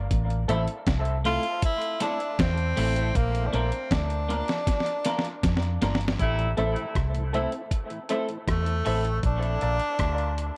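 A straight 4/4 pulse at 79 BPM anchors this spacious, meditative dub reggae excerpt in A phrygian. A gritty, thumpy sampler-style drum kit and a round, foam-muted fingered electric bass sit up front through an opening break that ends in a drum fill, while the chords move between Am and Bb. A breathy, whispered tenor saxophone carries the melody from 1.3 s, with a twangy clean electric guitar adding lush chorus and dub echo and a woody upright piano supplying stabs. At 6.2 s a clear horn section adds a brief second line, a mellow tonewheel organ with slow rotary speaker enters in the background at 6.4 s, and a filter sweep runs through the rest of the echo-heavy, lightly reverberant mix.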